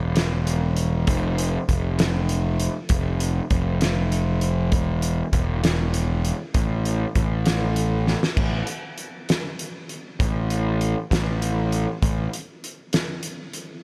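Wistful and restless, this math rock and midwest emo excerpt moves at 66 BPM in a straight 6/8, with a fuzzy, overdriven picked electric bass playing low notes up front and a loose indie drum kit with dark cymbals, a fat snare and a punchy kick playing crash, hi-hat, kick and snare in a small room under light reverb, until a drum fill at 8.1 seconds leads into a new section where the bass stops at 12.3 seconds and the drums carry on alone to 13.7 seconds.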